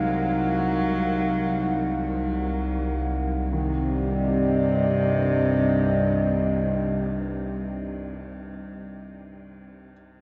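A dark ambient drone in free time, unsettling and desolate, cut from a longer piece and moving from an E-flat minor chord to C minor at 3.5 seconds. A tense, string-like drone with vibrato and its own reverb sits up front beside a deep, nasal analog pad holding sustained, detuned chords through chorus, while a reedy, gut-string cello carries the melody with light vibrato and delay. A very quiet, polished grand piano plays arpeggios until 9.9 seconds, outlasting the other parts, all bathed in a cavernous cathedral reverb with a dark, muffled top end.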